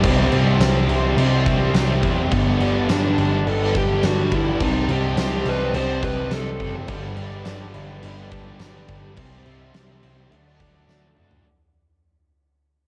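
A small-room cassette sound wraps this fading excerpt of wistful, dreamy shoegaze and dream-pop rock, moving at 105 BPM in a straight 4/4 in G major. A huge arena drum kit with bright cymbals, a fat snare and a punchy kick sits up front in a pumping hall, while a dark, round, foam-muted electric bass holds the low end. Three guitars stack their riffs: a thick, dark fuzz guitar and a bright, double-tracked distorted guitar in the background, plus a very quiet overdriven semi-hollow guitar. A smooth, detuned sawtooth pad with slow attack and chorus sustains mellow chords beneath, and a jingly, close-miked tambourine sits in the background. From 2.3 to 6.7 seconds a dark fuzz lead guitar carries the melody through tape echo over chords moving from C and Gadd9 to a plaintive Cm6. After the harmony reaches D at 10.3 seconds, a drum fill at 10.9 seconds closes the excerpt.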